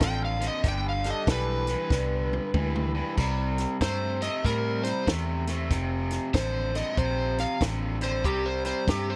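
Electric blues shuffle at 95 BPM in 4/4 with a swung eighth-note feel, rollicking and gritty, centred on C major in this short cut from a longer piece. An overdriven slide guitar with a warm, fingered tone carries the melody between G4 and G5, taking a solo over the opening 3.2 seconds. Beneath it, a bright, picked electric guitar grinds out a low riff with spring reverb. A round, foam-muted vintage bass sits dark and amped in the bottom register. A compact cocktail kit with a high-tuned snare, tight kick and dark cymbals plays up front, adding a fill from 1.9 to 3.2 seconds. A tight, mellow horn section with light vibrato adds jazz-style stabs only until 1.8 seconds, as the chords move from F and G into C, then back through F.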